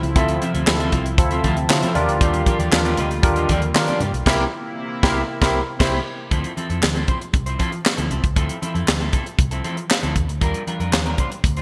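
Funky and slick, this early-eighties boogie funk excerpt moves at 117 BPM in a straight 4/4 in D minor, cut from a longer piece. Up front, a tight funk drum kit with a high-tuned snare, tight kick, hi-hat, crash and handclaps sits in gated reverb, while a dark, foam-muted fingered bass gives a round, amped low end. A clean, picked electric guitar plays a riff through lush chorus, joined by a barky tine electric piano played through a combo amp with analog chorus, which adds a fill at 1.2 s and stops at 6.0 s. A faint, shimmering pulse-width pad holds sustained chords until 6.3 s, and very quiet congas with thick skins add percussion underneath. The harmony moves through Dm9, Ebmaj9 and C7, with a band accent leading into the second section at 6.3 s, set in a bright 1980s-style digital production with moderate plate reverb.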